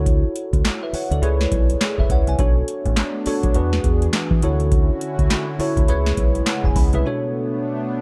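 A short new jack swing R&B excerpt in B dorian, slick and bouncy, moving at 103 BPM in 4/4 with a 61% swing on the sixteenths. A booming analog drum machine drives it from 0.1 s, its deep kick, crisp snare, handclaps and metallic hats overdriven and placed up front, with a short room on the snare, clap and hats. A deep, round fingered electric bass with a punchy, amped tone anchors the low end. A bell-like, bright tine electric piano, treated with analog chorus, carries the chords from Dmaj9 through C#m7, Bm7 and E7, and adds a fill from 6.2 to 7.0 s. A lush, detuned unison pad of sawtooth and square waves fades in slowly at 2.8 s with chorus, holding thick sustained chords underneath. The production is dark and dry, with little reverb, and only the piano and pad ring on after the bass and drums stop at 7.0 s.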